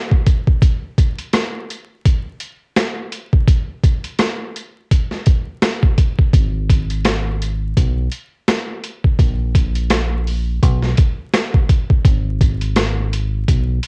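Dry and close, this home recording carries the character of cassette and a layer of vinyl crackle, with the drums sitting up front through a cassette-tape coloring. It is a tough, dark boom-bap hip-hop fragment in G# minor, moving at 84 BPM in 4/4 with a 57% swing on the sixteenths. The sampler-style kit of kick, snare, hi-hat and rim click sounds compressed and gritty, with a thumpy kick and a high-tuned snare that carry the ambience of being re-recorded in a large room. From 0.6 seconds the track sits in a break carried by the drums alone, until a deep dub bass enters at 6.3 seconds. Fingered on electric bass, played direct and amped, it is round, punchy and up front, holding low between G#1 and B1 beneath the beat.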